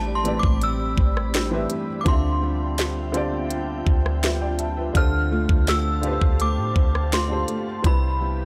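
Contemporary R&B with a longing, sensual mood, heard in a short excerpt cut from a longer piece and moving over Am11, Dm11 and Cmaj7 chords. A chiming, inharmonic synth carries the melody up high, its ringing tone treated with ensemble chorus and analog delay, while a glassy, ethereal FM pad holds sustained chords beneath it with chorus and built-in reverb. A felt-muted upright piano plays the accompaniment with a soft, intimate sound and audible action noise, and a small, thumb-plucked nylon-string guitar adds arpeggios in the background. A deep, round 808-style bass anchors the low end, and an up-front trap kit enters at 0.3 seconds with a knocking kick, sharp snare, rim click and crisp hi-hats, stopping at 8.0 seconds. The whole track has a dry, gritty hardware character set in a digital ambience.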